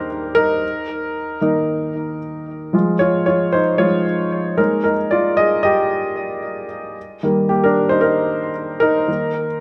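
A warm baby grand piano plays alone, present and up front, for the full 9.6 seconds of this anthemic, uplifting pop fragment, its lightly swung 16ths and chords moving from Eb through Db/F and Absus2 back to Eb, touched with digital delay and a moderate studio reverb in a dark production.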